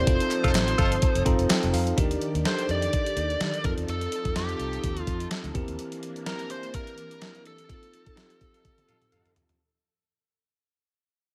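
Urgent and nostalgic, this 1980s-style pop passage moves at 126 BPM with a lightly swung 16th feel over F7, Ebmaj7 and C7 chords, and fades out from 2.0 seconds onward. A bluesy, overdriven lead guitar with tape echo carries the melody over a bell-like tine electric piano, a swirling phased string machine in the background, a dark, round muted bass that stops at 5.8 seconds, and an up-front, thumpy 12-bit drum machine that ends on a drum fill. A very quiet, crisp group handclap appears briefly near the start, and a loose horn section with light vibrato adds stabs at the opening and close, set in light digital ambience.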